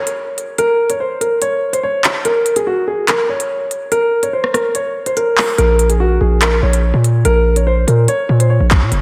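A dreamy mix soaked in lush hall reverb frames this tense, menacing drill cut, taken from a longer hip hop piece and built on a half-time feel. A dark grand piano carries the melody near the listener, its mellow, smooth and vintage tone rounded by a low-pass filter and trailed by analog delay. The electronic, produced drill kit comes in almost at once with a hard-clipped kick, crisp hats, handclaps and rim clicks placed close in the mix. The opening plays as a break over open harmony until 5.6 seconds, when a distorted 808-style bass lands on a minor chord. Heavy and aggressive, it pairs a sine body with a noise layer, fast attacks and decaying notes, and it sits up front as the loudest part of the track.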